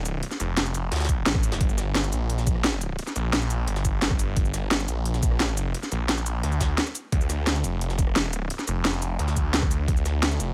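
Dark technical drum and bass with an aggressive, dark mood, cut from a longer piece and carried by a straight pulse. A snarling distorted saw bass sits up front from the first moment, its growling, detuned unison tone bright, distorted, overdriven and compressed, with a moving notch shaping its sustained notes. A drum and bass kit comes in almost immediately, overdriven and re-recorded in a small room, with a cracking snare, bright hats, a rim click and shaker pushed forward in the mix. Underneath it, a very quiet jungle sampler-style kit adds gritty, tape-warm hi-hats and a pitched-up, high-tuned snare, while a knocking, overdriven electronic kick joins at 1.1 seconds. A brief break from 6.8 to 7.1 seconds interrupts the drive before the groove resumes, and the whole mix stays dry.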